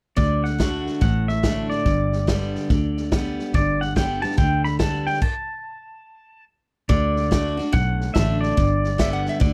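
Sunny and nostalgic, this short honky-tonk and classic country excerpt swings at 143 BPM in D major, with a twangy, compressed pedal steel singing the melody with slide and volume swells over a full-bodied picked dreadnought acoustic, a round foam-muted fingered bass and a punchy, rolled-off vintage kit, all halting for a stop from 5.2 to 6.9 seconds before a metallic, nasal lap resonator slide line slips in at 9.0 seconds, captured in a dry, close 1970s-style studio sound.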